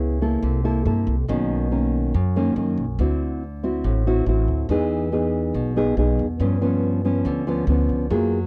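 In a straight four-beat feel, this short bossa nova fragment drifts through lush, colored chords from C6 to Bmaj9, D9, Emaj7 and finally G7#11 at 6.4 seconds, setting a wistful, melancholic mood. A dark, full-bodied nylon-string guitar, thumb-plucked in a classical manner, carries the accompaniment beside a woody, growly pizzicato upright bass, both sitting up front throughout. The sound is dry and close, like an intimate 1970s studio session.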